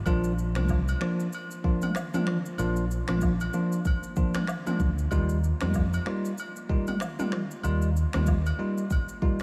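This afrobeats excerpt in Eb major moves at 95 BPM in 4/4, with a swung sixteenth-note feel that gives its romantic, sunny mood an easy sway. A bell-like tine electric piano carries the accompaniment, bright, clean and direct in the front of the mix. Beneath it, a fingered electric bass sounds dark, round and amped, also placed up front, and it drops out at 8.5 s while the other parts carry on to 9.4 s. The deep house drum kit is electronic and layered, with a deep kick and a tape-warm character, mixing finger snaps, rim click, shaker and toms. Agogo bells and woodblock add a quieter, close acoustic layer of percussion. The harmony shifts from Bb to Ebadd9 at 5.1 s, and a moderate cathedral reverb soaks the whole mix in a dreamy haze.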